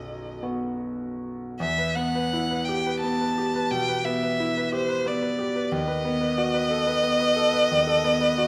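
A wet recital hall reverb, lingering about 1.5 seconds, surrounds this romantic classical duo in E minor, a melancholic, yearning passage cut from a longer piece and played with rubato in a slow 12/8 of roughly 50-62 dotted-quarter beats per minute. Up front, a single bowed violin carries the melody with a rich, focused tone and vibrato, while a bright, brilliant grand piano supplies the accompaniment from deep in the bass up into the middle register. The harmony settles from B onto E minor at 1.6 seconds and turns to B7 over D sharp at 5.7 seconds, with both instruments sounding together throughout.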